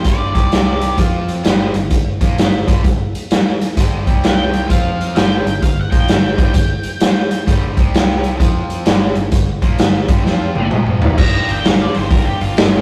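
Blues rock in a southern rock, power-trio vein, this heavy, gritty excerpt swings along in a minor key, with a double-tracked overdriven guitar riff over a round, foam-muted fingered bass. A raw garage drum kit sits up front with a punchy kick, medium-tuned snare and saturated crash, hi-hat and toms in a bright stone room, and it plays a fill at 10.3 seconds. After a brief opening phrase, the octave-fuzz lead guitar returns at 4.3 seconds and breaks into a solo at 11.2 seconds, all captured in a rough rehearsal-room recording with tube saturation and light reverb.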